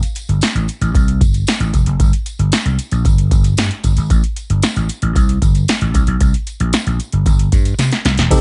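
A dry, dark-topped mix carries this late-night, danceable early-eighties boogie funk at 114 BPM, where a tape-warm analog drum machine with a deep kick, punchy snare and metallic hats drives up front alongside a growly, amped slap bass entering at 0.3 s, a jingly tambourine sits in the background, the drums play a fill from 7.8 s, and a clean tine electric piano heard through its built-in speakers appears only at 8.3 s as this cut from a longer piece closes.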